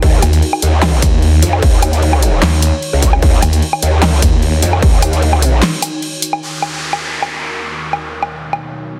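A dense, heavily limited and nearly dry mix carries this menacing, aggressive stretch of heavy wobble dubstep, where a formant-filtered growl bass and a snarling sawtooth bass tear through a half-time drop over a distorted electronic kick and an overdriven dubstep drum kit with a huge snare and bright hats, all above a phased, morphing wavetable pad that sustains throughout, before a break at 5.6 seconds gives way to a filter sweep on that pad and an up-front downlifter from 6.4 seconds.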